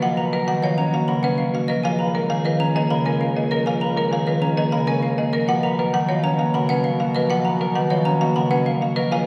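From the first beat, a buzzing, band-limited marimba struck with hard mallets carries the melody over an up-front marimba accompaniment in medium hard mallets, while a dark, scooped clean electric guitar and an airy xylophone with rubber mallets play arpeggios and a bassoon with light vibrato carries the bass line. This hypnotic, meditative piece of minimalist classical pattern music moves at 198 BPM in a straight 6/4, shifting from Bmaj9 to C#13 at 1.8 seconds and returning to Bmaj9 at 5.5 seconds. A wet concert hall reverb surrounds the ensemble in this short passage cut from a longer work.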